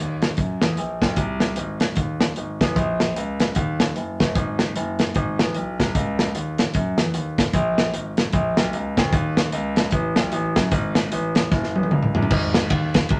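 Uptempo gospel at 151 BPM in 4/4 with swung eighths, this cut from a longer piece feels solemn yet fervent. A clear concert grand piano carries the bass line in its deep low register from the start, up front and intimate with audible action noise and long sustain. A dark, smooth modern studio kit with a tight kick, medium-tuned snare, hi-hat, ride, crash and toms joins at 0.2 seconds in a small room with moderate studio reverb, then plays a drum fill from 11.5 to 12.3 seconds.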